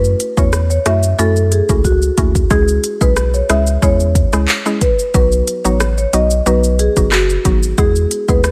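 This tough, bouncy dancehall groove in C# minor moves at 91 BPM in a straight 4/4. It opens at once with an electronic, produced drum kit, a round sine sub bass and a woody FM synth pluck. The up-front, tape-tinged kit pairs a deep kick with smooth hi-hats, plus handclaps, rim clicks and shaker, and a drum fill arrives at 1.8 s. Beneath it the sub bass sits deep and sustained. The pluck offers a mellow, vintage, warbling accompaniment softened by chorus. From 0.4 s a marimba played with medium mallets carries the melody through a delay, riding over a progression of F#m7, C#m, B and E in a dry room.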